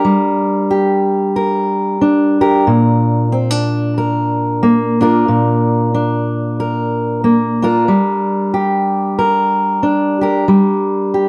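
Reflective and wistful, this short folk excerpt features a single fingerpicked steel-string acoustic guitar playing on its own in G minor at 92 BPM in 4/4, with a gentle swing on the eighth notes. The guitar sits up front with an auditorium-like body, ranging from Bb2 up to Bb4, and finger squeak adds an intimate, human touch. The harmony moves from G minor to Bb at 2.7 seconds before settling back on G minor at 7.9 seconds. A moderate studio reverb surrounds the playing, and the overall production leans dark and warm. Cut from a longer piece, the passage runs just over 11 seconds.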